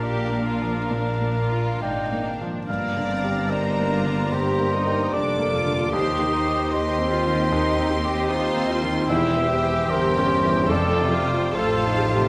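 A lush, passionate excerpt of a romantic movement for piano and orchestra, heard in a wet concert hall with a reverb time of about two seconds. The tempo sits around 63-77 BPM in 4/4, with a rubato feel as the harmony moves from Bb through Gm7 and Cm/Eb to an Edim7 and an F7 at 10.7 seconds. A clear, present concert grand carries the melody across a broad span down to Eb2, its deep bass, long sustain and audible action noise giving it an intimate, polished sound, while a violin section also carries the melody high above with focused vibrato. A mellow cor anglais with a soft attack and a second violin section shape the second lines, and a smooth viola section fills in the accompaniment in the background. Cellos and double basses anchor the bass with rich, bowed tone, the basses adding expressive portamento, and very quiet timpani with hard mallets sound an F2 between 10.7 and 12.0 seconds.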